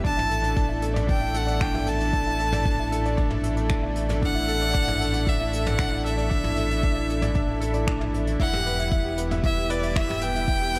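This is cinematic, moving piano and strings electronica at 115 BPM in a straight 4/4, cut from a longer piece. An intimate upright piano with audible action noise plays a woody riff through a digital delay, while a close, bowed solo violin carries the melody up front with smooth, even vibrato. A deep, layered electronic kick anchors the groove, and a round, detuned analog bass sits low and dark with sidechain pumping. A lush unison pad holds bright sustained chords in the background, treated with chorus and the same pumping. A soft brush kit with a rolled-off top adds crash cymbal, finger snaps, hi-hat and toms, while the harmony rests on Asus4 before moving to Em at 8.4 seconds, framed by light reverb and small room ambience.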